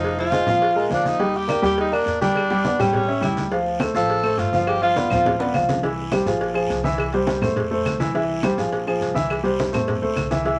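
A clear, punchy tenor saxophone with light vibrato and a smooth top leads this festive, sunny salsa excerpt from the very start, riding up front over a concert grand piano with deep bass at a brisk 208 BPM in 4/4. Beneath them, a growly, thumpy pizzicato upright bass with steel strings sits low and woody, while ringing, low-tuned congas struck with hard hands drive the groove alongside tight, high-tuned cowbell and bongos set back in the mix and a raspy guiro. Woody, dry claves join in the background at 1.5 seconds. The saxophone line drops out at 5.7 seconds, just as a drum fill closes the opening passage, and the harmony turns from a moving progression through Fm, Ebmaj7 and a ii–V chain toward a bright vamp that rocks between C, Bb5 and F. The piano, bass and percussion carry this second passage to the end at 10.6 seconds, all set in a moderate studio reverb.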